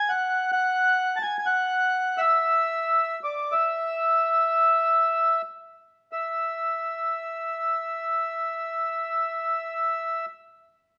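Celtic folk in E mixolydian, this short excerpt has a pastoral, wistful mood and a free, rubato feel in 4/4, with the pulse drifting between 44 and 69 BPM. A mellow accordion plays alone from the start until 10.3 seconds, its reedy, full tone carrying the tone-chamber richness of the instrument and sitting up front in the mix. The melody stays in a high, narrow band from D5 to A5. The opening passage slows down through its first 6.1 seconds before a second section begins, which runs to 11.0 seconds. A moderate recital hall reverb gives the accordion a natural sense of space.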